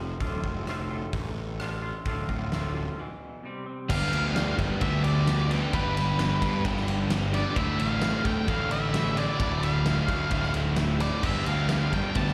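A straight 4/4 pulse at 130 BPM drives this brooding, cathartic quiet-loud alternative rock piece, heard as a live gig through a venue PA with recital-hall reverb: a twangy, scooped clean electric guitar plays fingered arpeggios with tremolo, plate reverb and slapback echo over a growly, up-front fuzz bass and a huge arena drum kit with a fat snare and punchy kick, then after a break at 3.0 s the arpeggios stop at 3.9 s as a dark octave-fuzz lead guitar takes the melody over riffs from a bright, double-tracked cranked stack guitar, a compressed overdriven guitar and a very quiet thick fuzz guitar, the harmony moving from Dm through G to Dmadd9 and G7.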